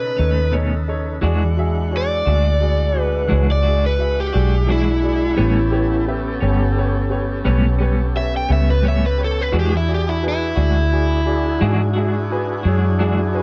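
Rollicking and soulful, this slow blues in 12/8 opens with a bright, picked overdriven electric guitar taking a short solo over a B9 chord before the band moves through E9, A9 and back to E9, the lead ringing through plate reverb until 11.6 seconds. Beneath it a round, punchy vintage muted fingered electric bass sits up front, a woody upright piano and a twangy clean electric guitar with tremolo fill out the accompaniment, and a thick tonewheel organ holds sustained chords through a lightly overdriven, slow rotary speaker. The production is dark with light reverb, and the clip is cut from a longer piece.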